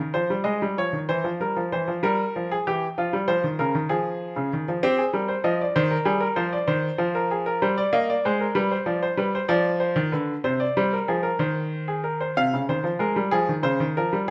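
A baroque-style classical invention in two parts, this solemn, contemplative piece unfolds in F minor at a measured 64 beats per minute in a straight 12/8 metre. A clear baby grand piano plays alone throughout the 14.3 seconds, ranging from C3 to F5 with a natural, up-front tone and short sustain. The harmony moves from F minor through C7 over E and back, then turns toward C minor, reaching G7 at 8.6 seconds before settling on C minor. At 12.4 seconds a new section begins on F minor over C, and the recording ends shortly after, cut from a longer work. A wet stone room reverb surrounds the instrument, lending the sober counterpoint a spacious, echoing resonance.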